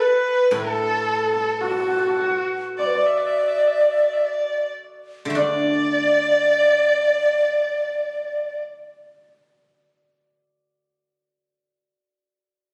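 Captured on a phone in a recital hall with a moderate reverb, this excerpt from a graceful, festive Chinese traditional chamber piece drifts in rubato at 44-58 BPM in a D gong mode, easing its pace through the opening phrase. An airy, end-blown bamboo xiao carries the melody up front with tongued, expressive vibrato, joined by a rich, focused erhu whose bowed portamento sits close beside it and a bright, shimmering hammered dulcimer as second lines. A silvery guzheng, plucked with fingerpicks, enters at 0.5 s with low ringing accompaniment and continues alone after the other parts stop at 8.6 s, sounding until 11.9 s.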